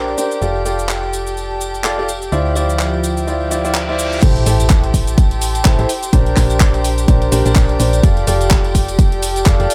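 A bright, brilliant baby grand piano riff with tape echo opens this euphoric, feel-good piano house excerpt, set over a round, dark FM bass, low-pass-filtered sustained chords from an earthy chamber string section and a warbling, nostalgic lo-fi pad with chorus, all four pumping under sidechain. A background tambourine and a layered house kit of hi-hat, handclaps, cabasa and crash join almost at once, with the drums in by 0.2 s. A reverse cymbal and sub drop enter at 3.5 s, leading into the drop at 4.2 s, where a punchy, tape-warm kick hits up front in a large room as the chords move through Am7 and Bb69 back to F69.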